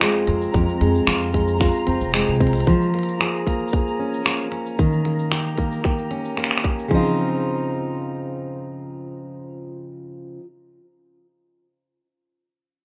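The recording has the rough feel of a home demo, with moderate studio ambience and some lossy compression artefacts, in a delicate, hopeful folktronica excerpt cut from a longer piece. Up front, a full-bodied jumbo steel-string acoustic guitar plays fingerpicked arpeggios through tape echo and plate reverb, moving from Fm through Db6/F and Eb7 before settling on Dbmaj9. An organic electronic drum kit of cabasa, finger snaps and crisp hi-hats sits forward in the mix, overdriven and low-pass filtered, alongside a tight, overdriven electronic kick, both re-recorded in a large room. An upright bass adds woody, thumpy pizzicato on gut strings only briefly, gone by 2.6 seconds, while a twinkling granular texture with an octave-up shimmer glimmers softly in the background. The drum kit and texture drop away at 6.9 seconds and the kick follows at 7.0 seconds, leaving the guitar alone to ring on until 10.5 seconds.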